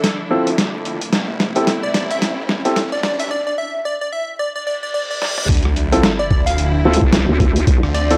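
A dry, gritty hardware sound with light reverb, vinyl crackle and transformer saturation frames this playful glitch hop fragment in D minor at 110 BPM, swung on the 16ths. Up front, a pitched-down, tape-warm boom bap sampler kit of hi-hat, rim click, medium-tuned snare and toms drives a build-up with a drum fill, a riser, a filter sweep, a break and a reverse cymbal, while background sound effects of electronic riser, reverse cymbal and sub drop add motion. A punchy, catchy unison lead with tape echo carries the melody over lush, clear symphonic strings that pump with the sidechain in the background, as a dark, worn concert grand with audible action noise plays stabs through 12-bit sampler grit, a low-pass filter and tape echo. Underneath, a swirling, thick detuned saw bass runs through a phaser across Dm9 and Am7 chords. The drop lands at 5.5 seconds with an impact and a thumpy, compressed electronic kick, and at 6.9 seconds a nasal, wobbling vowel-sweep bass with chorus bursts in, bright and up front.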